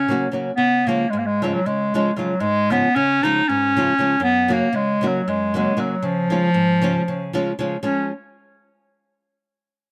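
Exuberant and wild, this short Balkan folk cut in 7/8 sets a soft-attacked, roomy clarinet up front carrying the melody in a classical style over a small, fingerpicked nylon-string guitar accompaniment with audible finger squeak, captured by close, detailed microphones with light reverb.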